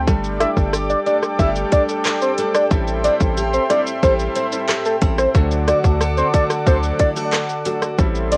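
Hypnotic and bouncy, this dancehall excerpt moves at 91 BPM in a straight 4/4, tuned slightly sharp to A4 = 445 Hz and cycling through Gsus2, Am7 and D. An electronic island pop drum kit sits up front with a tight kick, metallic hi-hats, handclaps, rim click and shaker, its overdrive giving the beat some grit, while a punchy, heavy 808-style bass with a sine body and noise layer hits hard alongside it. A smooth, detuned sawtooth pad holds sustained chords under chorus and sidechain pumping, and a bright, full-bodied dreadnought acoustic guitar picks arpeggios with audible finger squeak. A baby grand piano adds warm accompaniment from 0.1 seconds, and from 0.4 seconds a soft, round, octave-layered synth lead carries the melody with a sub-octave, wave-folded tone, vibrato, chorus and tape echo. Light reverb and the character of a home cassette recording wrap the pad, guitar, piano, drums and lead in a lo-fi glow.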